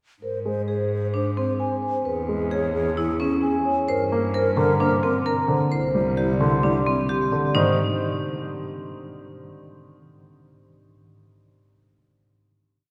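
A long, wet cathedral reverb surrounds this short, complete piece of minimalist classical pattern music, which moves at 131 BPM in a straight 4/4 and carries a hypnotic, propulsive mood in A-flat Lydian. A soft-malleted vibraphone leads with a repeated short cell, its metallic, ringing tone mellow and vintage, band-limited, and touched by a slow motor vibrato. Beneath it, a rich, focused cello from a single bowed player holds long bass notes with vibrato and a smooth top, while a baby grand piano repeats its own natural, short-sustained cell as accompaniment from 0.5 seconds. A hard-malleted marimba enters at 0.7 seconds, sitting up front with bright, percussive arpeggios of its own repeated cell, and a wooden-headed alto flute adds an airy, expressive second line in straight tone with a soft attack and lifted highs, its pulsing notes swelling and fading until it drops out at 7.3 seconds. 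The harmony moves through Ab, E, Gm and C before settling on a final Ab chord that rings into the cathedral space.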